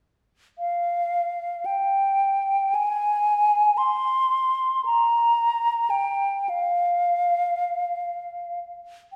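A mellow, hollow silver concert flute plays alone and up front from 0.6 to 9.2 seconds, its pure metallic tone carrying vibrato and tongued notes as it moves between F5 and C6. This classical passage in F minor unfolds in free time with a mournful, yearning expressiveness, like a fragment cut from a longer piece. A wet scoring-stage reverb with a 1.5-second decay surrounds the flute with a spacious, lingering halo.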